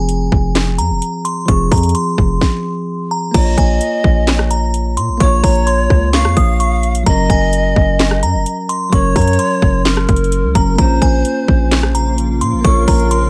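A punchy, heavy 808-style bass sits up front with an overdriven trap kit of hard-clipped kick, sharp snare, metallic hats, handclaps, rim clicks and crash, giving this brooding, half-time trap excerpt its hard-hitting weight. Above them a glassy, crystalline synth bell with chorus carries the melody over a clean, bell-like tine electric piano accompaniment, and after a brief stop around 2.4 seconds a breathy, reedy pan flute with vibrato and digital delay enters at 3.3 seconds as a second line. From 11.5 seconds a cloudy, detuned granular pad with phaser and its own reverb adds blurred sustained chords, all sitting in light digital ambience.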